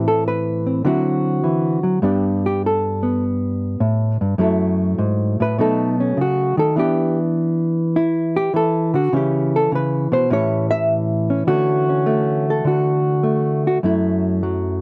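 A relaxed swing at 102 BPM in 4/4 sets a sophisticated, unhurried mood for this short solo jazz piece, cut from a longer performance. A single hollow-body electric jazz guitar carries everything, its dark, clean tone fingered and compressed, sitting up front in a dry, close studio sound with a 1970s character and little reverb. Through the first 11.5 seconds the guitar plays a solo line over a moving progression that passes through Am, D9, G, F#m11, B7 and A9 before settling toward A7. At 11.5 seconds the music arrives in D major on a Dmaj9, opening a new section that moves to F#m7 before the cut at 14.8 seconds. Spanning from low F#2 up to E5, the playing feels intimate and polished, with the tuning sitting slightly under standard pitch.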